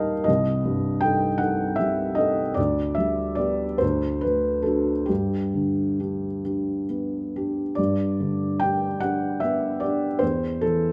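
A felt-muted upright piano carries this serene, dreamy romantic nocturne alone, its tone soft and intimate through thick felt, sitting up front in a dark stone room whose reverb lingers for about 1.2 seconds. The piece moves slowly in 12/8, around 44-53 beats per minute counted in dotted quarters, with a rubato feel that lets the time breathe. Set in G major, the piano spans from C2 up to A5, reaching from a deep low register to the upper notes with a mellow, warm tone. The harmony drifts from a half-diminished chord over C through G over D, D and G, before turning toward C over E near 10.2 seconds. This short excerpt, lifted from a longer piece, states its opening idea and begins it again at 7.8 seconds, lasting just under 11 seconds in all.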